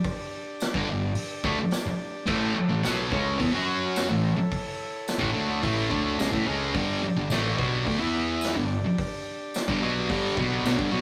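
This rough rehearsal-room recording has tube saturation and a moderate small-room reverb, giving a swaggering, rowdy slice of garage rock cut from a longer piece, driving along at 108 BPM in a straight 4/4. Up front, a thick, double-tracked fuzz guitar plays a bright, picked, distorted riff that dominates the mix, moving through chords of G5, A, F#5 and E5. A vintage acoustic drum kit sits mid-forward with a punchy kick, medium-tuned snare, hi-hat and dark crash cymbals, its gritty, saturated tone rolled off at the top. In the background, a growling fingered electric bass adds overdriven punch, while a buzzy vintage combo organ holds clean sustained chords bathed in spring reverb. A jingly tambourine, close and soft in the mix, joins at 0.6 seconds and rattles along beneath the band.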